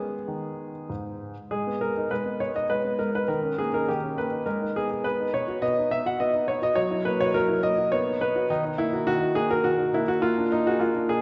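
Playful and cheerful, this short cut from a longer classical-period piano sonatina in G# minor moves at 104 BPM in 3/4 with a rubato feel, its solo grand piano sounding clear, intimate and up front with audible action noise as it ranges from G#2 to F#5 through chords such as G#m, B, F#7, D#m and A#7, set in a wet church reverb with a 2.5-second tail and a softened top end that stops at 7.5 kHz.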